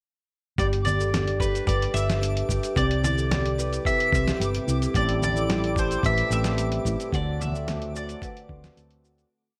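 A straight 4/4 groove at 110 BPM opens at 0.6 s, built from a muffled, thumpy electronic kick and a lo-fi sampler-style kit of fat snare, closed hi-hat, shaker and low conga in a clicking found-sound beat, under a round, hollow-body electric bass that plays a dub-style line up front. This hopeful, delicate folktronica piece in G major moves through G, Cmaj7, Am7 and D7, while a woody mandolin with gritty 12-bit sampler colour carries song-like motifs, a ringing vibraphone repeats a 16-step sequence, and a full-bodied steel-string acoustic guitar fingerpicks alternating-bass arpeggios, all three touched with delay. A twinkling granular shimmer holds a high note in the background, a reedy accordion adds sustained chords from 4.9 s, and the piece fades out from 6.4 s.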